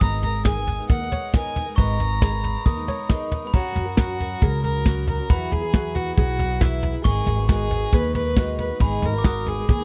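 A dark, woody fiddle carries the bittersweet, stirring melody with light vibrato and portamento in this 136 BPM indie folk excerpt in G# minor, joined by a sparkling glockenspiel struck with brass mallets, a shimmering, boxy twelve-string acoustic guitar, a light fingerpicked ukulele in the background, a pizzicato upright bass, an up-front soft brush drum kit, and a jingly tambourine heard only until 3.4 seconds, all captured in a dry, close 1970s-style studio sound as the arrangement builds from G#madd9 through F# and Eadd9.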